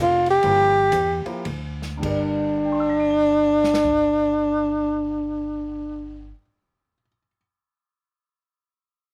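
A breathy, whispered tenor saxophone with subtone and vibrato carries the melody up front in this hypnotic, intense modal jazz fragment in G dorian and swung 3/4, slowing down over the first 2.0 s at 99-134 BPM and moving from a rootless C9sus4 to Gm, as a warm concert grand piano with slapback echo sits in the background, a woody, growly pizzicato upright bass anchors the low end, and an airy jazz kit with dark cymbals plays from 0.3 s to 4.0 s.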